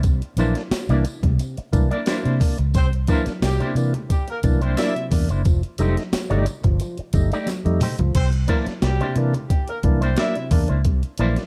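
Funk at 89 BPM in C mixolydian, energetic and playful, built on gritty, compressed breakbeat drums with a thumpy kick and a round, foam-muted fingered bass up front, while a reedy, lightly overdriven tonewheel organ with key click and slow rotary stabs over C9 and F9 chords, an envelope-filtered guitar with tremolo adds twangy accompaniment, very quiet bright congas play along with a jingly tambourine in the background, a distant, roomy horn section plays a second line from 2.7 seconds, and a drum fill at 7.5 seconds leads into a new section in this dry, dark-sounding excerpt.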